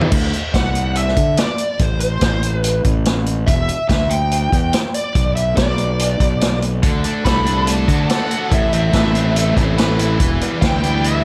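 A gritty, brooding classic rock passage opens with a brief full-band hit of organ, both rhythm guitars, bass and drums. The fuzz-toned fingered bass and a vintage acoustic kit carry on together, the bass growly and up front, the drums punchy in the kick with dark cymbals and a rolled-off top. At 0.5 seconds a smooth, dark overdriven lead guitar takes up the melody in a high register, coloured by wah, over a chord cycle of D, Am, Em and Bm. At 6.8 seconds the rhythm section fills out again: a tight, bright distorted guitar and a hollow-bodied overdriven semi-hollow guitar, set in the background, play riffs, while a very quiet tonewheel organ holds sustained chords with key click, slow rotary speaker and chorus vibrato. The second pass moves through D, Amadd9 and Em, all inside a studio reverb, before the piece is cut off.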